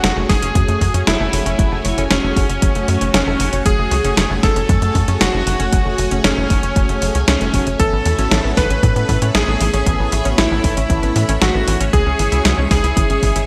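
A bright, clangy electric grand piano with digital delay carries the melody in this cinematic, driving synthwave excerpt in F# minor at 116 BPM, backed by a faint shimmering string-machine violin line, lush phased string-machine chords with sidechain pumping, a round chorused analog pluck arpeggio with 12-bit grit and delay, dark detuned synth brass stabs, a tight nasal sequencer bass up front, an overdriven 12-bit drum machine with gated-reverb snare and hi-hat, and a punchy layered electronic kick entering at 0.3 seconds, all moving from F#madd9 to Aadd9 at 7.8 seconds and C#m at 11.9 seconds in a bright 1980s-style digital mix.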